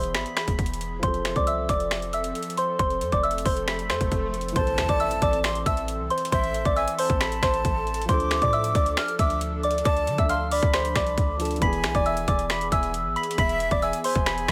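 A melancholic, menacing trap cut with a half-time hip hop feel, this piece opens on an FM-style synth bell carrying the melody up front, its pure, gentle tone colored by chorus, phaser and delay. Beneath it, a dark, boxy grand piano sits in the background while an airy, nasal pad with a slow attack and long release holds sustained chords, all over a deep, boomy 808-style bass with a sine body and a noise layer. The trap kit is electronic and up front, pairing a hard-clipped kick and woody snare with metallic hi-hats and finger snaps. An electronic swell builds from 3.2 seconds into an impact at 4.6 seconds, where the harmony turns toward A minor and a breathy jazz flute joins as a second line, expressive with vibrato, lifted highs and delay. The mix is dry, with little reverb, keeping the bell and drums close and present against the shadowy piano.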